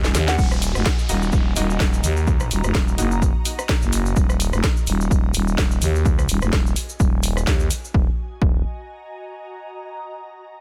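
A digital ambience surrounds this gritty, swaggering bass house excerpt, cut from a longer piece and set in Eb minor at 127 BPM in 4/4 with a swung 16th feel. A thick, growling FM bass sits up front with sidechain pumping and a filter sweep, while a punchy, tape-warm electronic kick lands at 0.4 seconds after a short drum fill from the house kit, whose cracking snare, hi-hat and rim click carry a small-room character. A grainy, band-limited tube shaker adds a vintage acoustic touch, and an ethereal, airy pad drifts in the background with ensemble chorus, phaser, reverb and pumping as it fades out by 7.9 seconds. A round, warbling synth lead gives a brief keys-like touch with chorus and tape echo, and a bold, detuned orchestra-hit-like stab plays from 1.1 seconds with a filter pluck, reverb and echo. A background downlifter sweeps beneath the opening half of the excerpt, from 0.4 to 4.2 seconds, and the track moves into a new section at 7.9 seconds.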